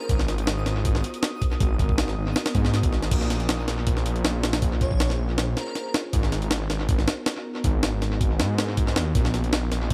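Raw and nostalgic, this short drum and bass cut from a longer jungle piece runs at 159 BPM in Bb phrygian, with a straight 4/4 feel and chords moving between Abm9 and Bbm9. Up front, a gritty, pitched-up jungle sampler-style drum kit with a thumpy kick, medium-tuned snare, hi-hat and crash carries a compressed, tape-warm character and a dub echo. Alongside it from 0.1 seconds, a thick, menacing detuned saw bass with a beating quality holds sustained notes between Ab1 and Ab2. At the opening, a twinkling granular texture adds an octave-up FM shimmer in the background, with its own built-in reverb, until 3.1 seconds. A very quiet, airy lead with chorus, vibrato and portamento surfaces briefly around 4.8 seconds, floating between Bb4 and Db5. The echo-heavy mix sits in light reverb and a digital ambience.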